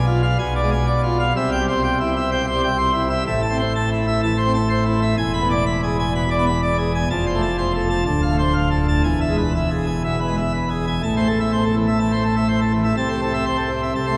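A pipe organ on full plenum, its mixtures giving a brilliant, forward tone with audible chiff on the attacks, carries this dramatic, stormy baroque-style toccata alone. It moves at 125 BPM in a straight 4/4, opening on a diminished seventh that resolves to C major before the music turns to A minor at 3.3 s. The harmony then drives through E7, F and D minor seventh toward E, and a new section begins at 11.0 s, settling on A minor. The organ spans from a deep D1 up to B5, filling the whole register with baroque voicing. A cathedral reverb with a 5.2-second decay surrounds it, placing the listener further back in the room in this fragment cut from a longer work.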